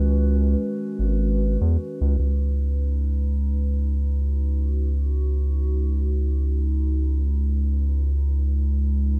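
A round, dark analog bass sitting up front and a warbling, nostalgic, lo-fi tape-like pad holding slow-blooming, detuned chords through chorus and its own reverb both sound from the start to 9.2 seconds of this deep, spacious ambient dub excerpt at 75 BPM with a light sixteenth-note swing, set over a C#7 chord in a digital ambience.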